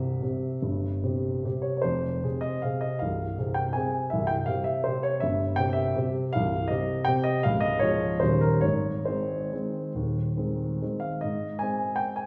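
A wet recital-hall reverb surrounds a woody, polished upright piano that sits present and up front, playing alone throughout this short fragment cut from a longer piece. The classical waltz moves in 3/4 with an elastic rubato feel, and its wistful, nostalgic mood rests on a progression from C through F minor before settling on Ab around 8.6 seconds. The piano spans a deep low bass up to its upper register, and a new section begins at 11.2 seconds just before the clip ends.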